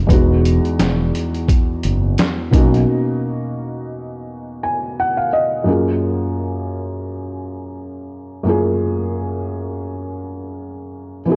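Mellow and dreamy, this lo-fi hip hop excerpt moves with a swung 4/4 feel over lush ninth chords. A felt-muted upright piano carries the accompaniment throughout, its thick felt and audible action noise giving it an intimate, up-front presence, further darkened by cassette tape and a low-pass filter. For the opening seconds a fretless electric bass adds round, punchy low notes with transformer saturation, alongside a trip hop sampler-style kit whose thumpy kick, medium-tuned snare and hi-hat carry 12-bit grit and a pitched-down, compressed character. The bass drops out at 2.8 seconds and the drums at 2.9 seconds, leaving the piano alone through a break and into the second section at 5.7 seconds. The whole recording sits in light reverb with a worn, warbling old-tape quality and warbly pitch drift.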